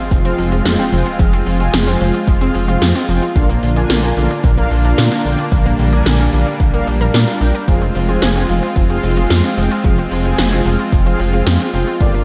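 A punchy, layered electronic kick and overdriven 80s pad drums with a gated snare and metallic hi-hats drive a straight 4/4 at 111 BPM in this moody, cinematic synthwave excerpt in F dorian, moving from Fm to Bb at 3.4 seconds and back to Fm at 7.7 seconds. A very quiet sub drop marks the opening impact, while an up-front, rumbling detuned saw bass and a smooth supersaw holding sustained chords both pump with sidechain. In the background, a bright, wave-folded unison pluck spins arpeggios through delay and slapback echo, and round, evolving synth brass stabs add chorus and a filter sweep, the upper parts bathed in shimmer reverb within a lush hall that gives a big arena sound.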